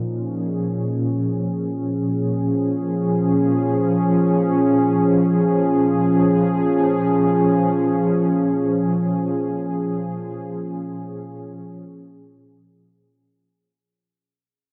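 A dreamy, reverb-soaked wash of plate ambience surrounds a lone analog pad, smooth and detuned with a sawtooth edge, sustaining a Bb minor seventh chord in free time up front in the mix, its slow attack and long release shimmering through chorus, tremolo and diffuse delay in a spacious, reflective ambient excerpt that fades out from 8.9 seconds to its end at 13.7.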